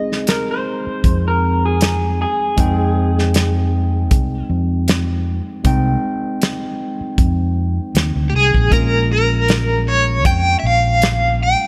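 Straight-eighth soul blues in F minor at 78 BPM, brooding and mournful, where a gritty, overdriven tine electric piano runs throughout over an up-front soul drum kit with a tight kick and rolled-off top and a round fingered electric bass, while a slightly broken-up, lo-fi guitar through a small old amp carries a phased second line until 4.5 s and a hollow-bodied semi-hollow guitar with tremolo states the melody briefly at the start and returns at 8.3 s as the harmony moves from Fm7 to Bbm7, all under light reverb.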